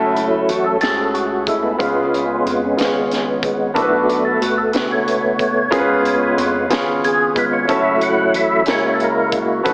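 A percussive tonewheel organ takes the solo across this brief excerpt of slow gospel, its fat, lightly overdriven tone carrying key click, a second-harmonic percussion edge, chorus vibrato and the turn of a slow rotary speaker, sitting up front in sustained chords. The mood is solemn and fervent, moving at 61 BPM in a straight 6/8 in F# minor. A warm, natural-sounding baby grand piano supplies accompaniment up front, while a rubbery, hollow square-wave bass with a nasal, bouncy filter pluck stays dark and in the background. A crisp fusion drum kit enters at 0.2 s with hi-hat, kick and a high-tuned snare, its punchy, gritty, saturated sound filling a small, pumping room. The harmony moves through F#m7, C#7, Bm7 and back to C#7 before landing on F#m7 and turning to F#7 at 8.7 s, all within a moderate plate reverb. The whole mix is heavily compressed into an AM radio sound.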